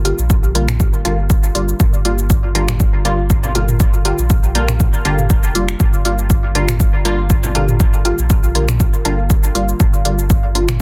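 A dry, dense and heavily limited mix sets a hypnotic, meditative dub techno groove in G minor at 120 BPM, with a slight swing on the 16ths and a single Gm7 chord holding through this short cut from a longer piece. A muted, detuned sawtooth chord stab with short decay and a filter sweep runs through chorus, phaser, dub echo and sidechain pumping, sitting over a round sine sub bass that pumps as well, while a punchy, tape-warm analog kick sits up front from 0.3 seconds. A layered deep house kit of finger snaps, smooth hi-hats and shaker carries dub echo and a softly clipped snare, and very quiet electronic toms and congas join at 0.7 seconds.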